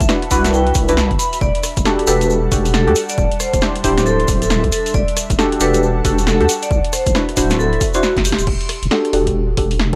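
Late-night and soulful, this swung two-step UK garage excerpt sets a metallic, ringing hard-mallet vibraphone melody over a deep wobbling bass with tube saturation and sidechain pumping, plus up-front, warbling vintage chord stabs with cassette-tape color and analog delay. A punchy electronic kick and analog drum machine (crash, hi-hat, rim click and snare) drive the groove alongside a grainy tube shaker and an airy, breathy pad with slow attack, all moving through lush, jazz-tinged extended chords in E minor. A drum fill at 8.0 seconds closes the first section, after which the vibraphone, shaker and pad drop away, leaving bass, drums and stabs in a dry, gritty hardware sound.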